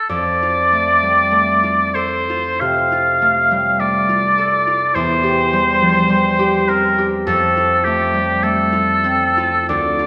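Solemn and yearning, this slow romantic classical duo in F major drifts with rubato at 45 to 53 BPM, as a vintage-toned oboe with light vibrato sings the melody up front from 0.0 seconds while a ringing, fingerpicked concert harp supplies close accompaniment from 0.1 seconds over a move from F through C/E and back to F, the pair set in a reverberant recital hall in this brief passage cut from a longer piece.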